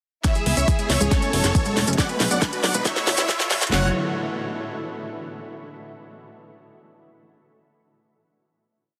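A four-on-the-floor kick and cracking snare drive this short uplifting trance build at 138 BPM in straight 4/4. Metallic closed and open hats, high congas and grainy hand-played maraca sixteenths fill out the groove, with the hats and percussion carrying sidechain pumping. In F# minor, the euphoric yet bittersweet harmony moves through C#m7, F#madd9, Bm and Dsus2 under a filter sweep and a drum fill that span the whole build, before landing on a final F#madd9 chord at 3.7 seconds. A big, detuned supersaw lead plays a repeating sixteenth-note riff over a pedal note in thirds and sixths, colored by cassette tape grit, tape echo and sidechain pumping. In the background, a dark, woody violin section bowed sul tasto with vibrato plays its own repeating riff in octaves through a delay. A punchy, plucky analog bass enters at 0.5 seconds with a galloping, wave-folded sixteenth-note line that also pumps, a very quiet, round analog pluck loops a six-step arpeggio drifting against the bar, and a faint electronic riser joins at 1.6 seconds, all set in a huge ambient reverb with a dense, heavily limited master.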